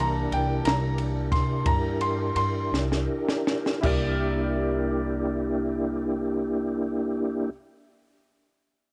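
A home cassette recording with studio reverb, this laid-back, swaggering slow blues in 12/8 and C mixolydian moves at 52-62 BPM, slowing down over its first 3.8 seconds while a worn, slightly detuned upright piano with long sustain takes a solo. A flute-like tonewheel organ through a slow rotary speaker and chorus vibrato holds sustained chords, and a thumpy, woody gut-string upright bass plays pizzicato up front. A compact, dark cocktail kit with a high-tuned snare and punchy kick plays from the start, adds a drum fill from 2.7 to 3.8 seconds and stops at 4.0 seconds.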